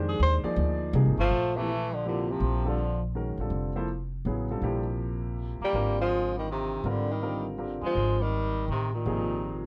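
A clear, open baby grand piano and a thumpy, woody upright bass begin this modal jazz fragment together, and the tenor saxophone enters almost at once with a brief solo statement. The music swings in three, with an open, hypnotic mood that circles between two lush major-ninth harmonies. The tenor carries the melody in a warm subtone, punchy yet roomy and set at a distance, with scooped notes in a jazz style. A trombone with a metal mute joins at 1.2 seconds as a second line, brilliant and buzzy with a thin, smooth top, sitting lower in the mix. Both horns drop out at 3.0 seconds, leaving the long-sustaining piano and the up-front plucked bass, then return together at 5.6 seconds. Light reverb and a dark, warm production wrap the whole quartet.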